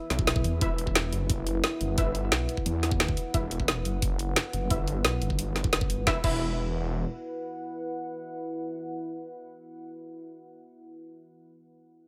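A deep, moody pad of detuned saw voices over a sub octave opens this dark, mechanical slice of technical drum and bass, its slow-attack chords softened by chorus and reverb and pumping against the beat. Almost at once a snarling distorted saw bass arrives up front, growling and resonant with a moving notch, its tube-saturated tone compressed and aggressive. The overdriven kit hits hard and close, pairing a woody snare and bright hats with crash cymbal, while a knocking electronic kick, re-recorded in a small room, adds weight underneath. From 0.6 seconds a bold, punchy orchestra-hit-like synth stab cuts through, layered with noise and trailing reverb and delay as a filter sweep moves across it. The harmony shifts from a minor chord to a bare power chord at 6.1 seconds and the drums drop out at 6.3, then the bass and pad end in turn while the stab rings on to close at 10.0 seconds.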